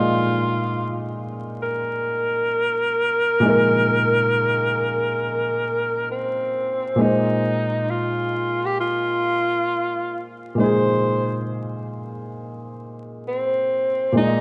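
Reflective and nostalgic, this slow hip hop piece at 67 BPM sits on a swung 16th-note feel, cut from a longer work. A breathy tenor saxophone carries the jazz-style melody up front with subtone, vibrato and scooped notes behind a low-pass filter, while a felt-muted upright piano gives mellow, intimate accompaniment through cassette-tape colouring and its own low-pass filter. The dark production adds vinyl crackle, a wet spring reverb and small-room ambience, and the harmony moves from Bb7sus4 to Bb9sus4 at 7.0 seconds.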